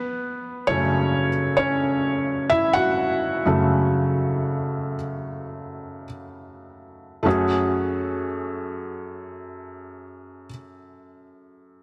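Longing and heartbroken, this slow pop fragment in F# minor moves at 49-68 BPM in a straight 4/4, easing down in tempo over its first 7.3 seconds as a felt-muted upright piano plays alone as accompaniment, ranging from F#2 to F#5. The piano sits up front with a soft, intimate, mellow tone, short sustain and audible action noise, bathed in a lush hall reverb. At 7.3 seconds the harmony shifts from F#m to F#madd9 as the passage runs on to 11.8 seconds under a dense, heavily limited modern master.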